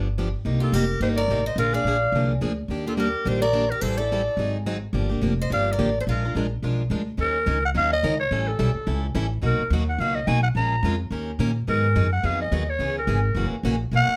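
A raspy, growling clarinet carries the melody up front with vibrato and scooped notes in this virtuosic, swinging stretch of acoustic string swing, backed by a bright, boxy plugged-in parlour guitar and a thumpy, woody upright bass with gut strings, while a second picked parlour guitar adds a line from 0.6 to 6.3 seconds, all in a moderate studio reverb.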